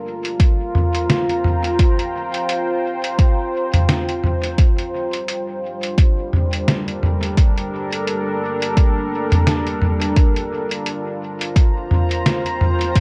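Ambient dub at 86 BPM in 4/4 with a swung sixteenth feel, meditative and spacious, cut from a longer piece. A deep, detuned sawtooth pad with a sub octave holds slow-attack chords from Fsus24 to Gm9 and back, warbling through chorus and its own reverb, while a muffled, pitched-down sampler kit of hi-hat, fat snare and toms enters at 0.2 seconds, trailing dub echo. An overdriven electronic kick joins at 0.4 seconds and sits loudest and up front in a dark production with light digital ambience.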